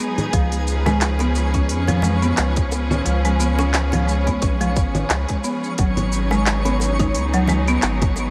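Hypnotic and warm, this organic downtempo excerpt, cut from a longer piece, opens with clear, focused bowed strings holding sustained chords with vibrato, a buzzing, woody marimba playing bright, airy arpeggios through tape echo, and a twinkling granular texture with an octave-up shimmer. From 0.2 s, a produced electronic kit of congas, handclaps, smooth hi-hats and shaker swings on the 16ths. At 0.3 s, a tight electronic kick arrives along with a deep, round analog bass sitting up front, the bass joining the strings in sidechain pumping. Ringing, close and dry bongos and congas enter in the background at 0.9 s, all set in a light studio reverb.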